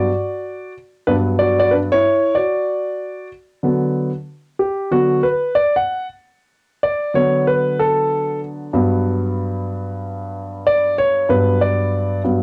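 A dark, mellow concert grand piano plays alone and up front, its deep bass and audible action noise given a vintage cassette tape grain in a small, intimate room, moving through Gmaj7 and D6 chords in D major at a swung 94 BPM hip hop groove that feels at once warm and cool across this 12.4-second excerpt from a longer piece.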